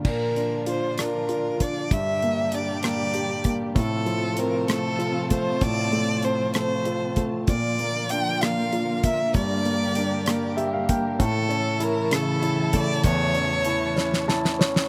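Melancholic and dramatic, this short excerpt from a longer pop ballad moves in a slow 6/8 at 65 BPM with a straight feel. A single bowed violin carries the melody from 0.1 seconds, its tone clear, smooth and even with vibrato and a slapback echo, sitting up front alongside the piano and drums. A polished, present baby grand piano supplies the accompaniment and adds fills at 10.3 and 14.0 seconds. Behind them a distant studio string section holds sustained chords with a soft attack, vibrato and expressive portamento. A damped 70s drum kit, dry and acoustic with a fat snare, tight kick, hi-hat, rim click and crash cymbal, anchors the pulse and closes with a fill at 14.0 seconds. The harmony moves through Bb, Gm and F/A before landing on an A chord, and the whole recording is dry, captured outdoors with little reverb.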